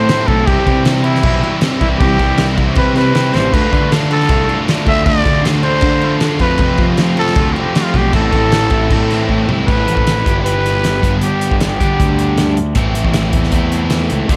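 A raspy, growling trumpet with light vibrato carries the melody over this moody, restless indie rock excerpt in A minor at 156 BPM, dropping out at 12.6 seconds. A bright, crunchy, double-tracked overdriven guitar riff sits up front beside a punchy fuzz bass, while a loose acoustic kit with a fat snare, dark cymbals and a pumping room sound adds a fill at 3.3 seconds. The chords move from C through Dm and F to Am, then shift at 9.7 seconds into a new section built on Em/G and G before returning to Am.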